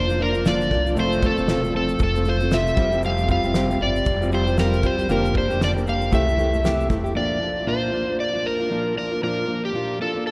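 Sunny and carefree, this acoustic pop excerpt has a light swing, with an overdriven slide guitar singing the up-front melody over a full-bodied, fingerpicked plugged-in steel-string acoustic guitar, a very quiet baby grand piano, a woody, thumpy upright bass and a cloth-damped drum kit with a fat snare, tight kick and shaker. The harmony moves from Bb/F through F, Csus4/F, Gm7/F and C6, all bathed in a long cathedral reverb that places the band in a church or concert hall. Around 7.2 seconds the piano, bass and drums stop, leaving the two guitars alone on a Bb chord until the cut at 10.3 seconds.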